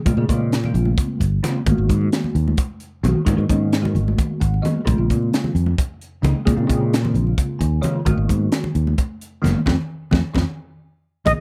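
A round, amped fretless electric bass sits up front in this slick, nocturnal jazz fusion piece in 7/8 at 263 BPM in eighths, alongside a gritty, saturated drum kit with a high-tuned snare and tight kick, ringing congas in the background, and a clean, bell-like tine electric piano with phaser that adds fills as the chords move between Bbm9 and Abm9 and then to F, where a band accent arrives at 9.7 seconds. A bright, reedy silver concert flute with vibrato and slapback echo enters at 11.3 seconds, all captured with little reverb.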